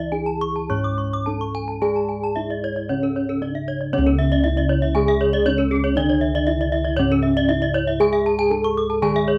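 A mellow bronze metallophone carries the melody with padded mallets, its paired tuning giving a shimmering beat to this hypnotic Balinese gamelan passage, while round, up-front bossed gongs hold the bass. A lower metallophone played with a horn mallet supplies mid-forward accompaniment, and two bright metallophones, also struck with horn mallets, ring out arpeggios, one of them airy, from the start to about 9.4 seconds over an unevenly pulsed 4/4. Cut from a longer piece, it moves into a new section at 3.9 seconds, with light reverb on a dry, close, 1970s-style studio sound.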